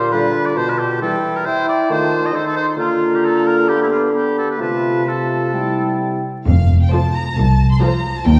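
Graceful and lively, this quick classical-period orchestral movement in F major at 133 BPM opens with winds and horns: an up-front bassoon accompaniment, a clear oboe, a background clarinet and a distant, hollow silver flute carry second lines over dark, roomy French horn chords. At 6.5 s the strings take over, with lush vibrato violins on the melody above rich, focused cellos and double basses and a brief, dry timpani note. From 6.9 s a softer violin line and shadowy violas join, all set in a wet scoring-stage reverb heard from further back with a touch of vinyl crackle.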